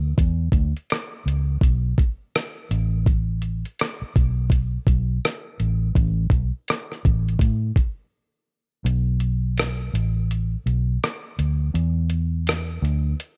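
Nostalgic and melancholic, this lo-fi hip hop excerpt in B minor moves at 83 BPM with a swung 4/4 feel, pairing a dark, round, foam-muted vintage electric bass with an up-front, compressed, pitched-down sampler-style drum kit of hi-hat, thumpy kick and rim click, all dry and recorded to cassette tape, until a break at 8.1 seconds gives way to a passage from 8.8 seconds where the kick drops out.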